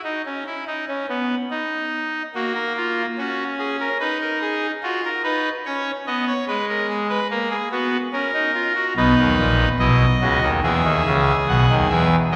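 A brassy, bright pipe organ trumpet stop with audible chiff and baroque voicing sits up front as the sole voice in this lively, stately excerpt of a baroque-style three-part classical fugue in B major at 72 BPM in straight 4/4, its lines moving through F#/A#, B/D#, C#5, B and E harmonies across about 12.4 seconds within a wet church reverb that rings for 2.6 seconds.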